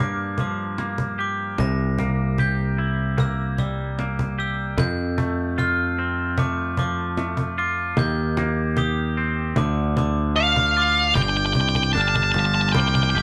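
A live band plays together in one room under a moderate studio reverb in this brooding, cathartic post-rock excerpt in G minor at 75 BPM. A twangy, clean electric guitar and a dark, bell-like glockenspiel struck with brass mallets weave arpeggios over a growly, punchy picked bass and a woody, band-limited cajon, moving from Gm7 through C7, F, Cm7/Eb and Dm. At 10.4 seconds an up-front octave-fuzz lead guitar enters with a distorted melody, and from 11.2 seconds a drum fill drives a build-up back to Gm7.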